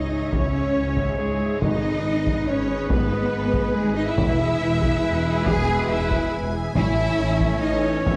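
This heroic, epic orchestral film-score passage in C# minor opens with the whole ensemble sounding at once. Lush, vibrato-rich violins carry the melody in the background, shadowed by a hollow, very quiet concert flute and a second violin line, while violas add gentle accompaniment. Mellow French horns, trombones and a soft-attacked string section hold sustained chords, and a clear solo trumpet punctuates with short stabs. A close, full cello section and distant double basses anchor the bass. At 0.3 seconds a taiko ensemble struck with hard sticks enters from a large, distant-sounding room, and timpani add faint accents from 1.6 to 2.2 seconds and again at 8.1 seconds. Moving at 140 BPM in a straight 3/4, the harmony steps through C#m, G#m, E and A, all framed by a dark production and moderate scoring-stage reverb in this fragment cut from a longer piece.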